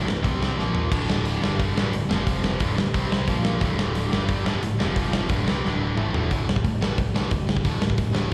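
This short cut from a longer angry, aggressive punk rock piece sounds like a live gig heard through the venue's PA, with a studio reverb and the spacious ring of a recital hall around the band. Two picked electric guitars drive the riff in straight 4/4, cycling through the power chords C5, Bb5, D5, G5 and F5 with D5 recurring between them. One guitar is overdriven and bright, while the other is tighter, bright and distorted and sits in the background, and both carry a slapback echo. Beneath them, a punchy picked electric bass with a direct tone holds down the low end. Up front is a big-room acoustic rock kit with a punchy kick, a medium-tuned snare, hi-hat, crash and toms, its top end rolled off, firing fills at 0.6 seconds and again from 5.6 seconds. At 6.3 seconds the background guitar drops out and a new section begins with the remaining guitar, bass and drums.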